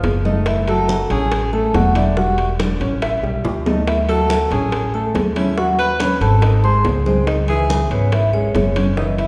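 Set in a reverberant recital hall, this short, fiery Afro-Cuban jazz excerpt in C# minor moves at 141 BPM in a straight 4/4, with a sophisticated harmonic path from F#m9 toward C#m7. Woody pizzicato upright bass sits up front beside a clear upright piano, while bright, damped congas, tight high-tuned bongos in the background and ringing metal-shell timbales drive the groove, with a drum fill at 3.4 seconds. From 0.3 seconds, a metallic vibraphone with slow motor vibrato carries the melody over a breathy, whispered tenor saxophone second line that sounds close and intimate.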